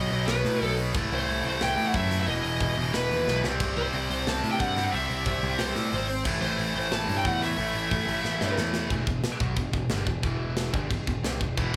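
A dark, epic heavy metal passage in E minor bursts in at once, with a high-gain lead guitar carrying a warm, distorted melody between B4 and A5 over two bright, picked rhythm guitars pounding out a riff. Beneath them a growling, punchy electric bass with overdrive anchors the low end, and a tight acoustic drum kit sits up front with bright cymbals, a medium-tuned snare and a tight kick. The tempo is 181 BPM in 4/4, but the opening feels half time, with drum fills breaking through at 3.3 and 8.2 seconds as the chords move from B through Am/C, E5, C and A5. The lead melody drops out at 8.5 seconds and the tighter rhythm guitar stops at 8.9 seconds, apart from a brief stab at 11.6 seconds, leaving the heavier guitar, bass and drums to land on E minor in a new section. The band sounds like it is playing live together in a large studio with moderate reverb, and this fragment is cut from a longer piece.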